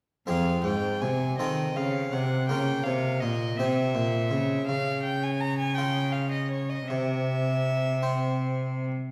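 In a 6/8 at 54 dotted-quarter beats per minute, this solemn, introspective baroque-style sonata excerpt in F minor, tuned to A4 = 436 Hz, sets a reedy, gut-strung violin melody over a round, plucked French-style harpsichord and a rich cello bass with light vibrato, all three entering together at 0.3 seconds and moving through F minor, B-flat minor, C and D-flat harmonies in the resonant wash of a church or concert hall with a 1.5-second reverb.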